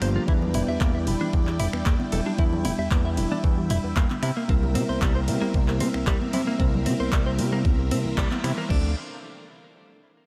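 This nu-disco excerpt has a cosmic, groovy mood, built on a fat, detuned sawtooth analog bass with tube saturation and a knocking, overdriven electronic kick that sits up front from 0.3 seconds. A pop drum kit of hi-hat, ride, crash, finger snaps and handclaps, also overdriven, plays alongside very quiet, bright congas. A clean, direct-recorded electric guitar riff with subtle chorus and delay sits with a tine electric piano, a lush vintage string machine with phaser and ensemble chorus, and a very quiet, mellow pluck playing arpeggios, while the piano and strings pump with sidechain under light reverb, and a band accent lands at 8.2 seconds.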